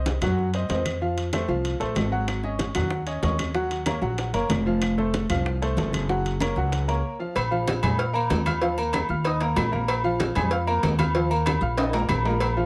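This passionate, danceable salsa excerpt opens with a clear baby grand piano and a dark, thumpy upright bass up front, the piano's short-sustain chords moving through Cdim, F and Ab7sus4 while the gut-string bass plucks woody pizzicato lines underneath. At a brisk 189 BPM in straight 4/4 and Bb minor, ringing metal-shell timbales and agogo bells join almost at once, alongside low-tuned congas with a compressed, saturated edge and distant claves sounding from a large room, both sitting in the background. Round, low-tuned bongos and cowbell played with hard hands enter at 2.3 seconds, also in the background. After a brief break at 7.0 seconds, the harmony shifts to alternating Bb5 and Ebsus2, and a drum fill near 11.8 seconds carries the passage to its cut-off. Close, detailed microphones and light reverb keep the ensemble crisp and present.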